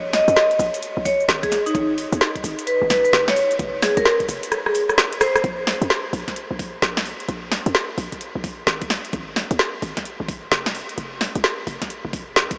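A ringing, metallic vibraphone struck with medium hard mallets, its motor off and trailed by tape echo, carries the melody through the opening of this moody, skippy two-step UK garage excerpt before falling silent at 5.4 seconds. Beneath it, up-front garage drums swing at 130 BPM in 4/4, with a woody snare, rim click, shaker and metallic hi-hats, all layered and re-recorded in a small room. An electronic kick with a knocking tone joins at 1.1 seconds, sitting low in the mix, while a short, punchy 808-style bass with a sine core, a noise layer and a fast attack decays quickly under the groove. The harmony in Bb minor moves between Bb, Ab and F chords, and a drum fill closes the opening section before the drums and bass carry the groove onward. The whole mix is soaked in a huge ambient reverb that gives it a dreamy haze, yet it sounds as if played through a small speaker.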